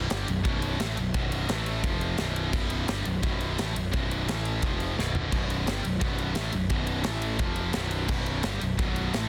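A dense, heavily limited modern master with studio ambience frames this relentless, dark heavy metal passage, cut from a longer piece and driving in a straight 4/4. A bright, double-tracked high-gain guitar sits up front, grinding a distorted, picked riff that cycles through B5, A5 and F5 power chords, while a fuzzy, overdriven picked electric bass, warm and up front, holds down the low end beneath it. An airy, polished acoustic drum kit in a small room supplies a punchy kick, high-tuned snare, ride, crash and toms, with a brief fill at 5.0 seconds.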